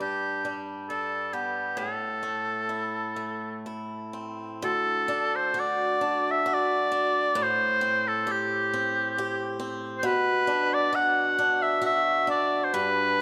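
This Celtic folk slow air moves at a rubato 66 BPM in 3/4, set in A dorian with tuning at A4 = 441 Hz, and its mood is haunting and full of longing. A clear oboe carries the melody up front from start to finish, played in a classical style with light vibrato and a touch of tape echo, ranging from G4 to F#5. Beneath it, a picked acoustic guitar in a swing style supplies the accompaniment, its fresh strings giving a bright yet boxy tone that also sits up front, reaching from D2 to G4. The harmony moves from G to Am, and a second section opens at 4.6 seconds on D before passing through Am7 to Bm. A moderate scoring-stage reverb lends the pair a sense of space in this short portion cut from a longer piece, which runs 13.2 seconds.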